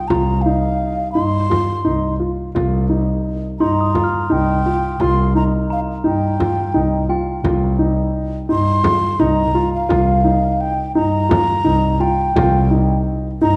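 A breathy wooden baroque flute carries a tongued, slightly unsteady melody with vibrato over dark, mellow concert grand arpeggios, while a bell-like glockenspiel struck with rubber mallets rings softly in the background until 8.9 s. A deep, bowed double bass played sul tasto with light vibrato and a soft attack sits close and intimate beside a dry, acoustic frame drum, giving this hypnotic, restless chamber piece in 7/8 an uneven, uneasy pulse over a Cm7 harmony. The sound is dark and warm, with the flute, piano and bass up front in a reverberant recital hall, and the passage is cut from a longer piece.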